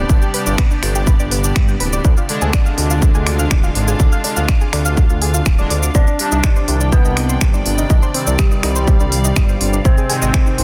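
A straight 4/4 pulse at 123 BPM drives this dark, melancholic melodic techno excerpt in C harmonic minor, where a punchy, tape-warm electronic kick and crisp-hatted house kit of finger snaps, hi-hat and shaker sit over a deep, rumbling detuned saw bass, while soft round pluck arpeggios, fat analog brass stabs with tape echo, and an evolving wavetable pad carrying 12-bit sampler grit pump under sidechain above a very quiet warbling analog drone until, at 5.9 s, a thick, wave-folded unison lead and an eerie, inharmonic FM bell second line enter over chords moving from G through Ddim to Cmadd9 and Ab in a dense, heavily limited mix.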